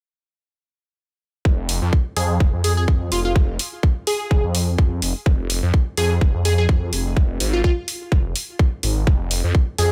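A swung sixteenth-note groove drives this gritty, bouncy bass house excerpt, where a tight, up-front electronic kick and a thick, swirling detuned saw bass carrying phaser, tube saturation and sidechain pumping begin at 1.5 seconds, joined by warm electronic hi-hat at 1.7 seconds, with kick and hats both in small room reverb, before a punchy, catchy plucky unison lead with vibrato and dub echo arrives at 2.2 seconds.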